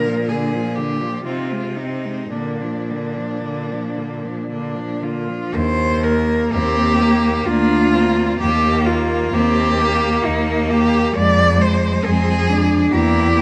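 Closely miked in a recital hall with a moderate reverb, this serene classical passage for four bowed cellos, cut from a longer piece, moves in a flexible, rubato three-four. An up-front, rich cello with vibrato carries the melody, a smooth, clear cello sits in the background on a second line, a focused cello fills the accompaniment, and an even, up-front cello anchors the bass, all four playing throughout. Near 5.5 seconds the harmony settles into a new section, and the passage closes on a diminished chord at 12.9 seconds.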